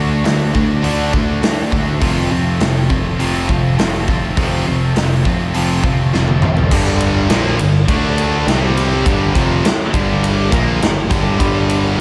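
A straight 4/4 groove at 102 BPM drives this swaggering, anthemic hard rock excerpt, cut from a longer piece, with a big acoustic rock kit entering at 0.3 seconds and sitting up front with a punchy kick, a medium-tuned snare, hi-hat, ride, crash and toms ringing in a natural, roomy space. Beneath it, a growly picked electric bass, both direct and amped, anchors the low end. Two high-gain distorted guitars, one of them double-tracked, and an overdriven electric guitar with a warm tone play riffs in the background, with the distorted pair bright. The opening section moves from D to F, and a drum fill at 6.1 seconds leads into a second section at 6.7 seconds built on G5, D5 and C5 power chords. A lush hall reverb alongside a small room reverb gives the whole mix a big arena sound.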